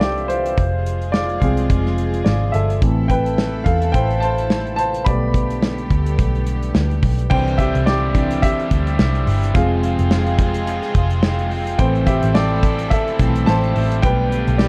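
A present, long-sustaining grand piano leads this warm, uplifting piano-driven pop excerpt from the start, carrying the melody over a round, foam-muted picked electric bass, a smooth small-room drum kit with a tight kick and rolled-off top, and soft-attack bowed strings floating in the background with a dark, sul tasto tone. The groove has a light swing, and the piano and bass sit up front under a light reverb. At 7.3 seconds a bright, overdriven garage guitar joins with a picked riff, adding raw edge as the chord sequence repeats.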